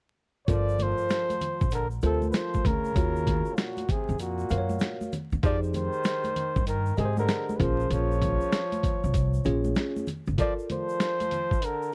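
A swung 97 BPM groove in 4/4 drives this smoky, cool jazz-hop excerpt in G phrygian: a gritty, compressed sampler-style kit with a thumpy kick sits up front beside a woody pizzicato upright bass, while egg shaker and congas sit quieter in a small room. A dark, breathy flugelhorn carries the melody with scooped notes, and a bright, distant trombone with vibrato plays a lower second line. A worn, slightly out-of-tune tine electric piano plays minor ninth chords; the bass drops out at 10.4 seconds as the harmony moves to a suspended chord, all in a dry, close 1970s-style sound dusted with vinyl crackle.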